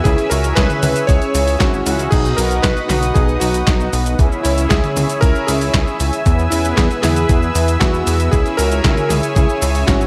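Lightly reverberant digital ambience frames this melodramatic, nostalgic excerpt of Italo disco in C# minor at 116 BPM, moving straight through C#m, B, C#m, E and back to C#m. A bright, cutting electric grand piano with chorused unisons and delay carries the melody over a smooth, slow-blooming analog pad and dark, brassy synth brass stabs that carry a cassette-tape tint in the background. Underneath, a glossy, nasal chorused synth bass sits up front beside a thumpy electronic kick, while a gritty, dusty soul-style sampled kit, re-recorded in a large room, adds snare, hi-hat, handclaps, cabasa, toms and crash cymbal.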